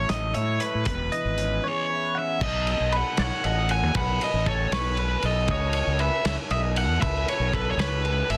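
This excerpt opens at once on a cluster of electric guitars and a fuzzed bass in a math rock and midwest emo piece in 6/8 at 78 BPM, with a playful, wistful mood. Up front, an overdriven guitar carries the melody in a warm, picked voice, while a clean guitar spins bright, twangy arpeggios bathed in lush chorus and plate reverb. A slightly broken-up guitar through a small old amp adds picked accompaniment only until 2.4 seconds, when the harmony moves from F#m7/A and E6 to B9 and later C#m9. The fingered bass sits prominently, overdriven with fuzz, and a loose indie drum kit joins at 0.1 seconds with a muffled, lo-fi studio-room sound, dark cymbals, a medium-tuned snare and a punchy kick with soft clipping. The mix is dense and heavily limited, with light reverb.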